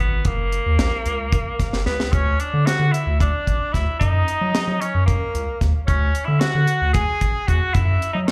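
A punchy, bright tenor saxophone leads this driving excerpt from a longer progressive instrumental, playing a forceful, vintage-toned jazz-style melody with vibrato, dressed in plate reverb, slapback echo and delay. Set in an uneven 7/8 at 224 BPM counted in eighths with a straight feel, the band moves between F# and D harmonies. Underneath, a round analog bass with a dark, sine-like tone, fast attack and long sustain sits up front, while a dry, acoustic reggae-style drum kit adds a tight kick, high-tuned snare and hi-hat, with a fill from 1.7 seconds. At 1.9 seconds a clear alto saxophone enters above the tenor with a light vibrato and classical-style phrasing, softer in the blend and carrying its own plate reverb and slapback echo. The sound is that of a live gig heard through the venue's PA, with a touch of club ambience.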